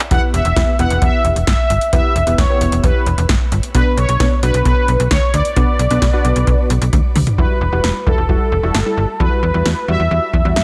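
A dry analog drum machine with a deep kick, punchy snare, metallic hats, handclaps and toms opens this nocturnal, driving synth-pop excerpt at 132 BPM in E dorian, joined at 0.1 seconds by a snappy, slap-like FM bass, mellow, detuned sawtooth keys with chorus and shimmer reverb, and a bold, fat, brassy synth lead that carries the melody through chorus, tremolo, shimmer reverb and digital delay, while a drum fill at 6.9 seconds leads into a new section at 7.4 seconds as the chords move from Em and Bm to Emadd9 in a dense, heavily limited mix.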